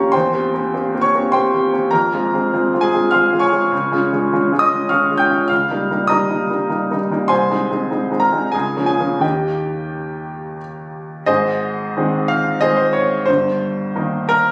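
In a rubato 3/4 that breathes between 81 and 103 BPM, this romantic character piece for solo piano unfolds with a passionate, lyrical mood. A clear baby grand carries everything alone from 0.0 to 14.5 s, spanning G1 to G6, its sound intimate and natural and placed up front, with the action noise audible beneath the notes. The harmony moves through C7/E and Fm before settling into Ab major from 3.7 s, passing Db, Eb7/Db, Ab/C and Bbm/Db on its way to Eb. A new section opens at 11.3 s on Ab and turns toward Eb/G. A moderate recital-hall reverb with a 1.8-second decay surrounds the instrument, and the passage is cut from a longer piece.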